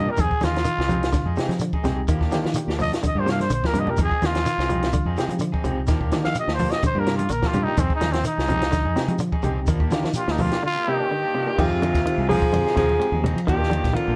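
A growling, gritty trumpet leads this intense, driving afrobeat piece at 126 BPM in F dorian over Fm7 and Ebmaj9, backed by a round, punchy fingered bass, a clean, twangy guitar playing arpeggios, a slightly broken-up guitar on stabs, a barky reed electric piano with tremolo, a tight compact cocktail kit with dark cymbals and a high-tuned snare, grainy shekere and soft-handed congas in a lightly reverberant live room, until at 10.9 seconds a bright, forceful alto saxophone takes the melody up front while a raspy baritone and a distant, roomy tenor saxophone add second lines.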